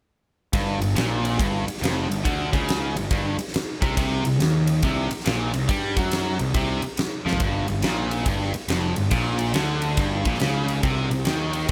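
A small room's ambience surrounds this short cut from a longer piece of blues rock and southern rock, with the drums and guitar sitting up front. The mood is swaggering and driving, with a swung eighth-note feel in 4/4. A cranked stack guitar, bright, overdriven and double-tracked, plays a picked riff in its low register, moving between G5 and C5 power chords. Beneath it, a picked electric bass pushed through fuzz and overdrive adds a growly edge to the low end. A huge arena drum kit with hall sound, a fat snare, punchy kick, sparkling cymbals, ride and toms drives the trio, and breaks into a fill at 7.2 seconds. All three parts play together from 0.5 to 11.7 seconds.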